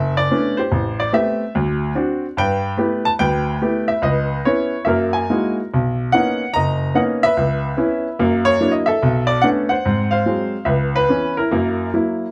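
Close, detailed microphones and light reverb give this short cut from a longer piece an intimate, up-front sound, with a clear, natural baby grand piano whose notes carry a short sustain. It is moody, cool solo jazz at 145 BPM in 4/4, swung on the eighths yet played with rubato, the piano alone from 0.0 to 12.3 seconds, ranging from F#1 to A#5. The harmony moves through rich extended chords such as Bm9, G69, F#13 and Bmaj9, settling on a C#m7 to F#7 turn at the close.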